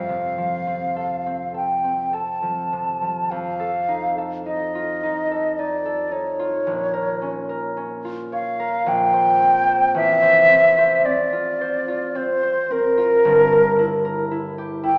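A mellow, hollow silver flute sings a pure, tongued melody with vibrato over fingerpicked, ringing concert harp in this serene romantic classical duo in F major, unfolding at a slow 54 BPM in a flexible, rubato 3/4, with the flute placed up front, the harp softer beneath it, and the whole passage heard from further back in a wet recital hall with a thin AM-radio colour as the harmony darkens to B-flat minor at 6.7 seconds before turning to F over A at 10.0 seconds.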